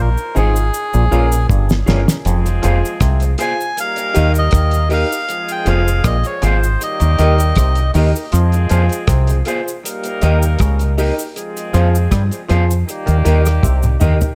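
In a straight 4/4 roots reggae groove, laid-back and serious in this cut from a longer piece, a round, foam-muted deep dub bass sits up front beneath a cloth-damped, thuddy drum kit with tape echo that enters at 1.5 s, while a reedy, breathy melodica carries the melody with dub echo until 7.9 s, a stringy clav with phaser plays a riff in the background, a brilliant grand piano adds stabs, a slightly broken-up electric guitar with dub echo accompanies, a compressed cabasa supplies percussion, and a clear, vibrato-laden horn section with dub echo brings in a second line from 2.3 s, all within a small room ambience.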